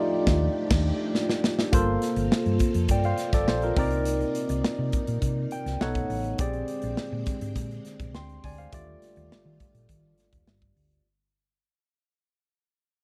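Slick and nocturnal, this polished 1980s jazz-funk pop excerpt moves at 103 BPM in a straight 4/4. A barky, bright tine electric piano with subtle chorus sits up front, playing fills from 0.0 to 1.7 seconds and again at 5.2 seconds, while a lush, sawtooth string machine with ensemble chorus and slow attack holds mellow sustained chords over a dark, round hollow-body fingered bass and a punchy studio drum kit with a pumping room sound. After an opening band accent and a drum fill, the track fades out from 1.7 seconds across rich chords such as Ebmaj9#11, Gm11 and Bb13, all in a dry, close mix.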